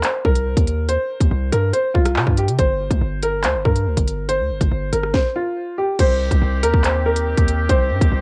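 A half-time drill groove drives this cold, ominous hip hop fragment, cut from a longer piece. The up-front electronic drum kit pairs a hard-clipped kick and sharp snare with crisp hi-hats, handclaps, rim clicks and a crash cymbal, all carrying a cassette-tape coloring. Beneath it, a heavy, punchy 808-style bass with a sine body, a noise layer, fast attack and decaying notes plays prominently from the start. An intimate, vintage grand piano carries the melody in a smooth, short-sustained tone, its action noise audible and its phrases trailed by tape echo. At 6.0 s a distant, roomy woodwind section enters with clear, classical-style sustained chords and light vibrato, also tinted by cassette tape. The whole sits in light reverb with the character of a home recording on cassette.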